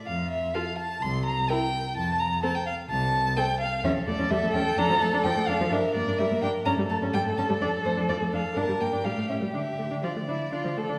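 A vibrato-laden, focused first violin carries the melody up front in this dramatic, restless classical-period string quartet movement in D minor, taken from a longer piece at a quick 127 BPM in straight 4/4, with the cello anchoring the bass from 0.1 seconds and an equally present, smooth-topped tone. From 0.5 seconds a distant, expressive second violin adds a second line with portamento, while a close, even viola fills in the accompaniment, all with a rich bowed sound. The quartet is heard from further back in a wet recital hall, and the harmony moves from F through dominant-seventh colour and G minor before settling on D minor near the end.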